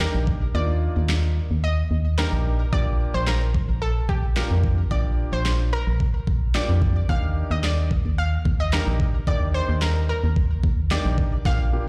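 This summery, carefree dance-pop passage opens with everything arriving at once: a round, vintage-toned analog pluck carries the melody, warbling through chorus and digital delay, with a bright sawtooth edge and a filter sweep on its quick, decaying notes. Beneath it, an intimate concert grand piano plays the accompaniment, its audible action noise and deep lower register given a polished, present sound while sidechain pumping makes it breathe in time. Up front sits a hollow, organ-like FM bass, dark and percussive with a fast attack, also shaped by sidechain pumping. The smooth R&B drum kit is electronic and tape-warm, with a knocking kick, a deep snare and handclaps; the kick drops out from 0.5 to 2.7 seconds before returning, and a drum fill closes the passage at 11.5 seconds. The harmony moves from Ebmaj7 to Bb6 and back to Ebmaj7, and the whole mix sounds as if it were played over a big sound system in a bare room, this clip being cut from a longer piece.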